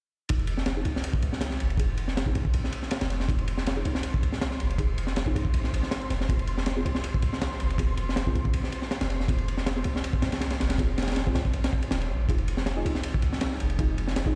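A crunchy breakbeat kit sits up front in this raw, frenetic drum and bass and jungle excerpt at 160 BPM in F minor. Its punchy kick, high-tuned snare and dark ride cymbal sound saturated and gritty, with a rolled-off top. Beneath it, a long sustained 808-style bass hums deep and sine-like through tube saturation, each note striking fast and then decaying. A soft, full-bodied chord stab sits in the background, shaped by a filter sweep and coloured with chorus, cassette tape wear and dub echo, as the harmony moves from Fm7 to Ab6/F and back. From 1.7 seconds a breathy, wind-like tuned noise texture drifts in behind, and an ethereal pad of detuned chords arrives very quietly at 13.2 seconds near the close. The mix sounds as if played on a big sound system in a bare room, wrapped in large studio reverb.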